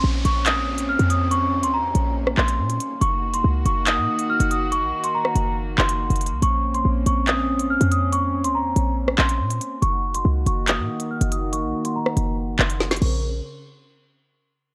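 A downlifter opens this cold, tense drill excerpt together with a bell-like celesta melody, bowed chamber strings holding sustained chords, and a punchy, tight 808-style bass, with a filter sweep running across the opening 13.2 seconds. The electronic drill drum kit enters at 0.3 seconds in a half-time feel at 141 BPM in 4/4, placing a woody snare, crisp hi-hats, handclaps, rim clicks and crash cymbal up front. The celesta's delicate, sweet line sits high and mid-forward with a hard-felt-hammer brightness, while the strings bring a rich, reedy, gut-string period tone, both softened by a low-pass filter. Underneath, the sine-based bass with its noise layer and fast, decaying attack follows a Bb minor progression moving between Bbmadd9 and Gb6. A drum fill closes the main passage just before the parts drop away around 13.2 seconds, and the whole piece is bathed in a worn, warbling cassette-tape ambience with a drifting pitch.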